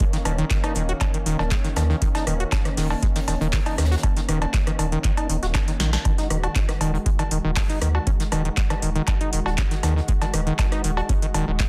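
Driving and gritty, this acid house cut moves at 119 BPM in a straight 4/4 on Eb minor, with a deep, up-front electronic kick and a booming analog drum machine of crisp snare, metallic hats, cowbell, handclaps and rim click, tape-warm and re-recorded in a large room, over a soft, distant brush kit in the background. A squelchy, resonant sawtooth acid bass riff with delay snarls above a round, dark square-and-sine bass that joins at 0.3 seconds and pumps with the sidechain, while a lush, nasal, detuned unison pad holds chorused chords that also pump. A drum fill lands at 5.8 seconds in a dense, heavily limited mix with little reverb.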